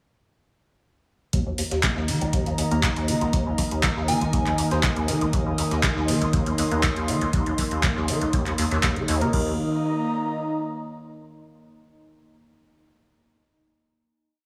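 A raw, trippy acid house piece with light studio reverb, where a squelchy, resonant acid bass riff, a four-on-the-floor electronic kick, metallic hats, claps and crash from a booming analog drum machine, and a very quiet gritty looped breakbeat drive a pumping groove from 1.3 seconds, joined by a warbling lo-fi tape-like pad, an up-front breathy pad, hollow organ-like stabs with tape echo, and a soft FM bell phrase in the background at 4.1 seconds, before the airy pad holds a final chord until 11.3 seconds.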